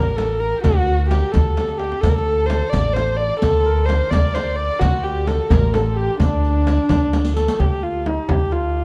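A hypnotic, longing 6/8 pulse at 86 BPM carries this Persian modal ensemble piece in dastgah homayun on D, where an intimate, dark kamancheh sings the melody up front with light vibrato, portamento and plate reverb over a growly pizzicato upright bass, while a shimmering santur and a very quiet, distant violin section (which stops at 7.3 s) trace a second line, and tombak, a deep, saturated frame drum and a roomy riq sit in the background, with drum fills at 1.6 s and 7.1 s.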